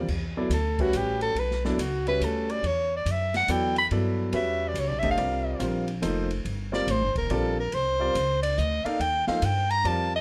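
Modal jazz in a cool, searching mood at 141 BPM in a swung 3/4, where a breathy, whispered soprano saxophone with plate reverb takes an intimate, up-front solo over a concert grand piano with audible action noise, a woody, thumpy pizzicato upright bass and a dark, boomy-kicked acoustic drum kit in a small room, as the harmony moves from Em11 to Cm11 at 5.2 seconds.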